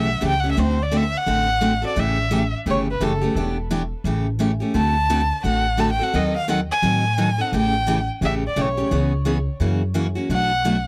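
Acoustic string swing in the jazz manouche style, this lively, swinging excerpt moves at 173 BPM in A mixolydian, with a brisk progression that passes through D7, a D#dim7 and a C#m7 to F#7 turn before landing on Bm7. A single bowed violin carries the melody with rich, boxy tone, expressive vibrato and portamento, touched by tape echo. Beneath it, a bright, full-bodied picked steel-string dreadnought guitar and a woody, thumpy pizzicato upright bass on gut strings sit up front in a dry, close 1970s-style studio sound with light reverb, all three playing together from the start, with violin and guitar running to 10.8 seconds and the bass sounding until 10.9 seconds.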